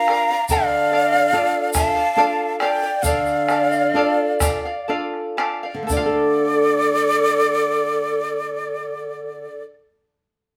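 Recorded as a band playing live in one room with wet studio reverb, this short cut from a longer Andean folk piece in 3/4 and D minor pentatonic feels earthy and festive at 58-72 BPM, slowing down until 5.9 s, as an up-front, cane-toned quena with soft attack and vibrato carries the melody over a breathy wooden pan flute second line with tongued chiff, a shimmering fingerpicked charango with double strings, a fingerpicked flamenco guitar with fresh strings and finger squeak, and a round, vintage bombo and grainy tube shaker that both stop at 6.4 s.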